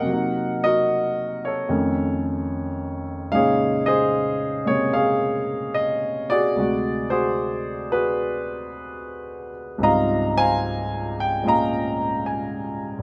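Solo jazz with a smoky, late-night mood, played by a single grand piano at a relaxed swing across the full 13 seconds of this short passage cut from a longer piece. Captured with close, detailed microphones and a light reverb, the piano sounds natural and up front, spanning from deep bass notes to bright upper registers. Rich extended harmonies drift through a half-diminished chord and altered dominants before settling on a lush major-ninth sonority near 9.8 seconds.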